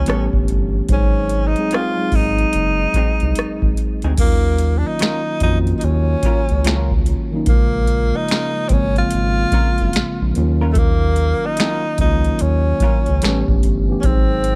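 Sultry and late-night, this slow neo-soul R&B excerpt moves at 73 BPM with a swung sixteenth feel in Eb dorian, shifting at 4.2 seconds from a brief A9 to Ab7 opening into a stretch built on Ebm9 and Bbm7. A breathy tenor saxophone carries the melody with vibrato and scooped notes, touched by slapback echo, over a mellow tine electric piano, a round analog bass with a ring-modulated edge, and a booming analog drum machine of deep kick, crisp snare, metallic hats, rim clicks, finger snaps and crash. A clean, picked hollow-body jazz guitar sits quietly in the background as a second line until 13.4 seconds, and the whole mix is dark and close, with little reverb.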